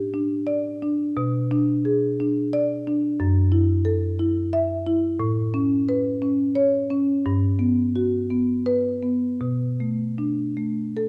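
A solo marimba played with medium mallets carries this reflective, flowing excerpt from a longer contemporary classical piece, its rosewood bars sounding woody and up front across a range from F#2 to E5. In a three-beat metre with rubato phrasing, it moves through chords such as Bm6, F#m7, Aadd9 and Gmaj7 before settling on Bm7 at 9.4 seconds. A moderate recital-hall reverb surrounds the instrument, lending the 11-second passage a gentle sense of space.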